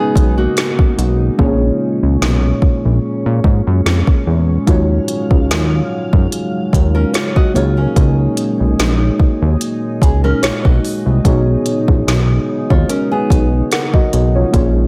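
A fat, detuned analog bass sits up front in this moody, sensual contemporary R&B excerpt at 73 BPM, joined by a smooth, tape-toned electronic kit with a soft kick and woody snare whose hi-hats drop out from 1.4 to 4.7 seconds. Muted, felt-like synth keys with chorus and a glassy, ethereal FM pad with ensemble chorus and sidechain pumping carry chords moving from B69 through Bbm7, Ebm11 and Gb69. A fingerpicked nylon-string guitar with digital delay plays arpeggios briefly at the start, then returns at 6.9 seconds, its finger squeaks audible in a dry mix.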